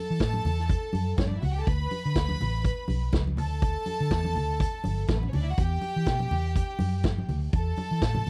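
Joyful and glamorous, this short disco excerpt moves at 123 BPM in D major with a light sixteenth-note swing, cut from a longer piece and recorded dry and close in a 1970s studio style. A clear, earthy violin section with light vibrato carries a second line from the opening, while a dark, round, foam-muted fingered electric bass joins at 0.1 seconds. A punchy vintage drum kit of hi-hat, kick and medium-tuned snare with a rolled-off top arrives at 0.2 seconds, together with bright, low-tuned congas struck with hard hands, and the chords move from A7/E through D5, Gsus2/D and Em7 to A5/E.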